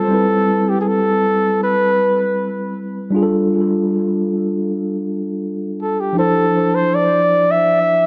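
Tender and romantic, this short reggae excerpt in 4/4 sets a close-miked flugelhorn, played solo in a jazz style with a light vibrato, over a mellow tine electric piano that sounds clean through its built-in speakers. Both sit up front and carry tape echo, while a moderate plate reverb adds a soft halo as the harmony moves from Cmaj7 to F69 at 3.1 seconds and Dm9 at 6.2 seconds.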